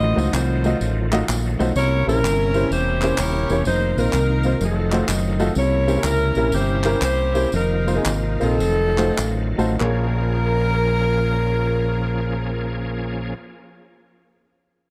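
Uptempo gospel in Bb minor with a solemn, soulful swing, this excerpt sets a tight, bright saxophone section up front on the melody over clear concert grand piano with short sustain, a round, amped fingered electric bass, and a shouting tonewheel organ in the background with slow rotary speaker, light overdrive and chorus vibrato, while tambourine and group handclaps play from 0.2 to 10.2 seconds, the tempo slows from 5.6 seconds, and a grand piano fill arrives at 8.9 seconds before settling on Bbm7, all in a dark production with light reverb.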